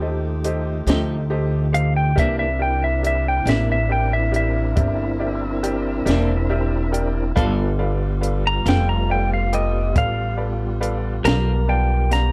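A twangy, compressed lap steel guitar carries the slide melody up front, entering at 1.7 seconds in this cut from a longer slow blues in 12/8 at 46 BPM. The piece is set in C mixolydian, with a rollicking, swaggering mood. Beneath it, a growly, woody upright bass on steel strings sits prominently. A compact cocktail drum kit, recorded in a small room with a punchy kick and high-tuned snare, joins at 0.4 seconds on hi-hat, kick and snare. A clear baby grand piano with short sustain and a clean, picked electric guitar with tremolo, which comes in at 0.9 seconds, fill out the accompaniment. A lightly overdriven tonewheel organ holds full sustained chords through a slow rotary speaker with chorus vibrato and key click, while a soft-attack saxophone section with vibrato adds smooth chords in the background. The harmony moves from F9 to C9 and G9, and the dry, close sound recalls a 1970s studio.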